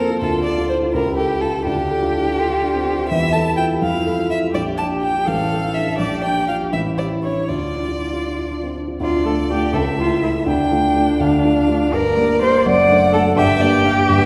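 Violin, cello and piano sound together from the first moment in this quick, spirited classical-period movement for piano trio, cut from a longer piece and moving in a graceful 6/8. The single violin carries the melody up front with a clear, focused, close tone and vibrato, while the cello sings a smooth, even second line with a rich, bowed sound of its own. Beneath them the grand piano plays the accompaniment in a dark, mellow and intimate voice with a vintage character, its action noise audible in the up-front placement. The harmony settles firmly into a minor key from about 3.1 s, and a new section begins at 9.0 s that turns toward G minor chords before the fragment breaks off at 14.3 s. A generous concert hall reverb, wet and lingering, surrounds the trio as though heard in a church or concert hall.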